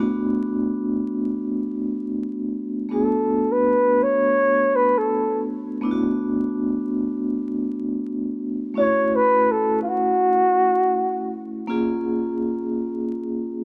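Floating in free time with an unhurried, relaxed feel, this fragment of a hip hop piece sits in E mixolydian. A vibraphone played with soft mallets carries the accompaniment throughout, its metallic, ringing tone mellow and airy, with a medium motor vibrato. It opens alone on a Bm7/A chord before a breathy flugelhorn enters at 2.9 seconds over a rootless E9sus4. The flugelhorn takes the solo melody in a dark, whispered, intimate jazz style, with a soft attack, scooped notes, light vibrato and a vintage character. It falls away at 11.3 seconds over an A6 chord, shortly before the harmony shifts to A#m7. Both instruments sit up front in light reverb, wrapped in a layer of vinyl crackle that gives the whole a warm, lived-in glow.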